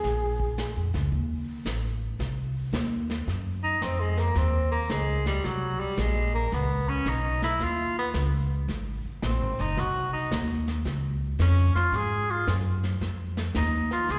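A clear, distant tenor saxophone with light vibrato and scooped notes carries a relaxed, playful small-group swing solo from 3.6 s, after a breathy, whispered alto saxophone sounds briefly in the opening second, both horns carrying plate reverb and slapback echo, over a woody, thumpy pizzicato upright bass on gut strings and a brushed vintage drum kit with a rolled-off top, the whole performance heard as a live gig through a venue's PA in a moderate club room.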